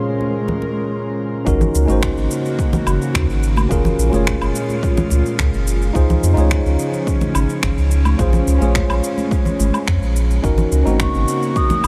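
Sunset chillout at 107 BPM in a straight 4/4, wistful and relaxed, taken from a longer piece and bathed in a huge, dreamy ambient reverb. A worn, slightly out-of-tune tine electric piano with tape echo opens alongside an airy, breathy pad whose detuned, chorused chords bloom slowly, while bright, close congas played with hard hands sit in the background from 0.2 seconds. At 1.5 seconds a round, deep sine sub bass arrives up front together with an overdriven electronic kick and a layered kit of electronic shaker, finger snaps and woodblock. The harmony drifts through Bbm9, Ab9sus4, Gbmaj9 and Dbmaj7 before circling back. At 11.0 seconds a distant, unsteady wooden flute with vibrato and tongued notes enters high up, its mellow tone trailing tape echo.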